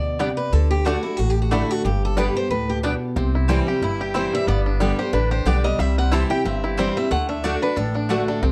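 Bluegrass in G major at a driving, lively 182 BPM with a swung eighth-note feel, this excerpt from a longer piece opens with a bright, boxy parlour guitar carrying the melody up front, complete with finger squeak, over a full-bodied dreadnought guitar on accompaniment with old strings and a thumpy, woody upright bass. A twangy, percussive banjo joins the melody at 0.2 seconds alongside mandolin stabs with a double-string sparkle. The chords move from G and D into C for the second section at 3.2 seconds, all set in a dark production with light reverb.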